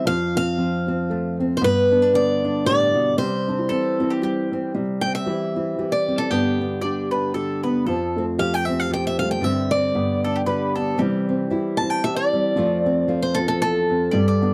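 A dry, close, 1970s-style studio sound with light reverb frames this peaceful acoustic folk piece in a swung 3/4 lilt, cut from a longer performance. A bright, boxy parlour steel-string guitar carries the picked melody up front and takes a solo from 4.7 s, over fingerpicked classical nylon-string accompaniment and mellow, intimate arpeggios from a felt-muted upright piano. A double-strung bowl-back mandolin enters at 3.7 s with a quieter second line as the chords move among F, G and C.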